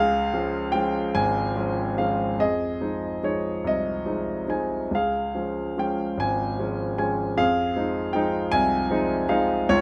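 A clear grand piano carries this short classical fragment alone, its polished, present tone placed up front by close, detailed microphones and softened by light reverb. The mood is melancholic and wistful, set in F minor and 6/8 at roughly 46-53 beats per minute counted in dotted quarters, with a rubato feel that lets the time breathe. The harmony sways between Db and Fm7, changing about every two and a half seconds across the 9.8 seconds of the passage. The piano spans a broad range from Ab1 up to Ab5, giving the lyrical line depth beneath it. Cut from a longer piece, the fragment feels like a quiet, reflective statement.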